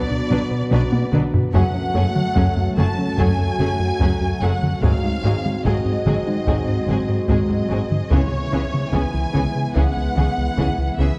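A lush, vibrato-rich violin section carries the melody of this futuristic, vast cinematic cue, a hybrid of orchestral and electronic scoring cut from a longer piece, over a bed of second violins, violas with portamento, cellos, woody double basses and a mellow, distant French horn section. A rubbery square-wave bass plays a riff and a harp-like synth pluck with chorus and tape echo plays arpeggios alongside a glassy, warbling FM pad, while a compressed, saturated taiko ensemble struck with hard sticks adds a drum fill at 0.7 seconds. The dark production sits in a concert hall reverb that lends the whole texture a sweeping depth.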